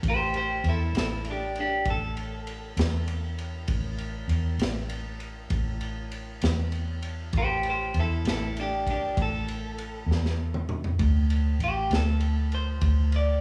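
A slow 12/8 blues sways at 66 BPM in A minor, driven by a crunchy breakbeat drum kit whose tight kick, high-tuned snare, dark cymbals and toms sound gritty and saturated, with a drum fill at 10.1 s leading into the chord change from A5 to D5 at 11.0 s. A round, amped vintage fingered electric bass with a foam-muted tone sits up front, while a clean, picked electric guitar takes a warm solo through spring reverb. This brooding, smoky excerpt is cut from a longer piece and carries the ambience of a band playing live in one room, set in a moderate large studio reverb.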